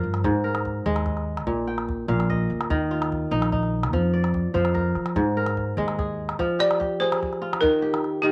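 Moderate spring reverb and a small-room ambience frame this hypnotic, flowing passage of West African traditional string and xylophone music in 12/8 at 98 BPM in F dorian, where a crisp, ringing, fingerpicked kora sits up front with arpeggios throughout, a pizzicato upright bass with steel strings carries the low end until 6.3 seconds, a small, vintage, band-limited calabash supplies percussion, and a dry, buzzing, woody balafon played with hard rubber mallets takes the melody up front after a brief opening touch, returning at 6.6 seconds as the music moves into a new section.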